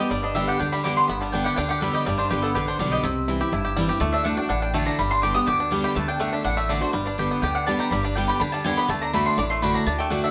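A straight 4/4 pulse drives this lively, virtuosic bluegrass piece at a brisk 246 BPM in G major. The banjo, played with fingerpicks, carries the melody with a twangy, percussive bite. A bright, full-bodied jumbo acoustic guitar sits up front with picked accompaniment, and the upright bass adds growly, thumpy pizzicato low notes. The mandolin's woody double strings are featured throughout as a solo voice, its picked stabs riding high above the band. The harmony moves among G, C and D, and the band plays live in one room with a wet studio reverb that gives the 10.3-second excerpt a lively sense of space.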